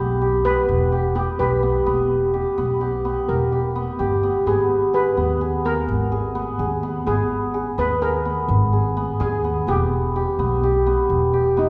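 A hammered cimbalom sits up front, its ringing arpeggios between B3 and G#4 giving this excerpt of contemporary chamber music a hypnotic, restless pull. Set in 11/8 at 254 eighth-note beats per minute with a straight feel, the piece moves through Em, shifts to G#m at 4.5 seconds, and returns to Em at 9.7 seconds. Beneath it, a woody pizzicato upright bass with steel strings, also up front, holds the low end from E1 to D#2 with a warm tone. A vintage, band-limited steel pan, played on cello pans with medium rubber sticks, adds a metallic, shimmering second line between D#4 and B4. All three parts play throughout the 11.7 seconds, heard from further back in a wet recital hall with a 1.8-second reverb tail, and tuned to A4 = 439 Hz.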